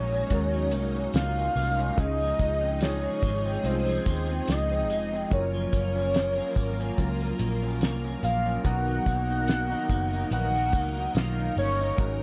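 Indie bedroom pop with a laid-back, hazy mood and a gentle swing, cut from a longer piece. A warbling, nostalgic lead synth with lush chorus and slapback echo carries the melody up front over slightly broken-up electric guitar through a small old amp with vibrato, mellow detuned analog keys with a cassette-tape tint in the background, and shimmering string-machine violins holding sustained chords. A round, foam-muted picked bass and a cloth-damped, thuddy drum kit with a fat snare, entering at 0.3 seconds, sit close under a light small-room ambience as the chords drift from Ab9sus4 through Dbmaj7 and Gbmaj7 to Cbmaj7.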